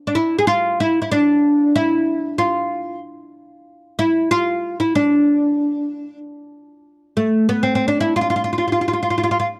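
A solo oud, plectrum-plucked with a woody, deep tone from its fretless double strings, plays up front from 0.1 s in this hypnotic, soulful Arabic fragment at 94 BPM in 3/4, tuned to A4 = 438 Hz and moving into a new section at 6.8 s, all captured in a dry, close, 1970s-style studio recording with small-room ambience.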